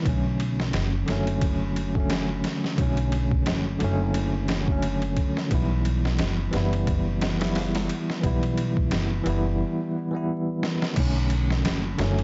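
A bell-like, clean tine electric piano sits up front with tremolo and tape echo over a woody pizzicato upright bass and a gritty, pitched-down, sampler-style drum kit with a thumpy kick, overdrive and studio reverb, shaping a melancholic, brooding trip hop excerpt at 88 BPM in B minor that moves from Bm7 to Em, reaches a break at 9.6 seconds with a drum fill at 10.6 seconds, and carries the gritty character of a dry hardware recording with vinyl crackle and a dulled top end.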